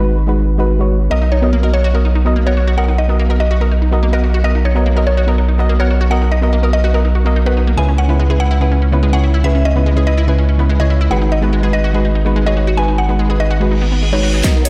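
Euphoric and lush, this future bass passage moves with a half-time feel through a dreamy mix soaked in lush hall reverb. From the start, a soft, round pluck with chorus and diffuse ambient delay lays down dark, gentle chords over a deep, saturated sub bass that sits up front, both breathing with sidechain pumping. At 1.1 seconds a woody, mallet-like synth pluck carries the melody through chorus, phaser and analog delay, joined by a bright, warbling unison pluck spinning arpeggios under its own ambient delay. The harmony drifts from G#m7 to Bmaj7, C#m7 and back to G#m7, and a reverse cymbal and riser builds from 13.7 seconds. At 14.4 seconds a drum fill bursts in, with a punchy electronic kick, a fat filtered snare and bright hats, as huge detuned supersaw chords flicker in the background just before the cut.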